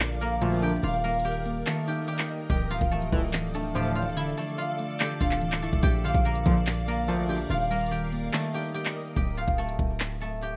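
A silvery guzheng melody played with fingerpicks and touched by delay leads this melancholic, menacing trap cut in half-time D minor at 144 BPM, resting on muted felt-like synth keys, a blurred granular cloud pad, a punchy 808-style bass and a trap drum kit with a knocking kick and crisp hats, while a glossy chorused polysynth adds up-front stabs from 0.4 to 7.4 seconds and the kick briefly drops out, heard through vinyl crackle in a rough home demo mix.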